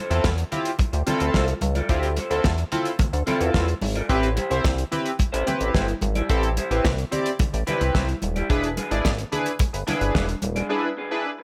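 A twangy, slightly broken-up electric guitar riff through a small old amp opens this early-eighties boogie funk excerpt, sitting in the background with an analog chorus on it. Almost at once a glossy chorused polysynth comes in with sustained pulse-wave and sawtooth chords that carry filter sweeps. At the same moment a nasal synth bass enters up front, with filter plucks and a moving notch. A dry, damped 70s drum kit with a fat snare, tight kick and hi-hat sits forward in the mix with gated reverb, while ringing, medium-tuned congas add colour from the back. In A minor at 109 BPM with a straight 4/4 feel, the slick, danceable groove moves from Dm7 to Am7 at 4.1 seconds and to E7 at 8.5 seconds, all in a light, small-room ambience.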